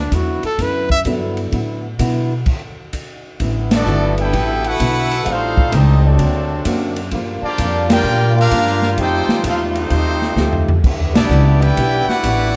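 A swung 4/4 at 129 BPM drives this joyful big band swing excerpt, with a growly, woody pizzicato upright bass, a boxy fingerpicked acoustic guitar in the background and a polished drum kit with dark cymbals and a punchy kick. A forceful, close-miked solo trumpet opens over the rhythm section, a dark, vintage-sounding grand piano slips in briefly, and the band stops from 2.5 to 3.4 seconds. Then a brilliant trumpet section takes the melody over veiled cup-muted trombones and a very quiet, distant saxophone section holding sustained chords, with band accents and a short drum fill in a moderate studio reverb.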